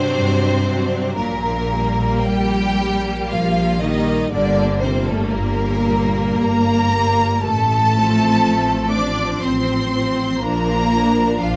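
An up-front, focused studio violin section carries a high second line with close, clear vibrato above a slow, melancholic and solemn passage for string orchestra, cut from a longer romantic movement in G minor. At 59 BPM in 3/4 with a rubato feel, the melody sits lower in a symphonic violin section whose light vibrato gives it an intense yet smooth-topped tone. A lush viola section supplies even, smooth accompaniment. Beneath it, a rich cello section and an expressive, up-front double bass section share the bass line. The harmony moves from D7/G through Gm/Bb, Gm and F/A before settling on Bb. Every section bows throughout the 11.6 seconds, captured by close, detailed microphones in a dry room.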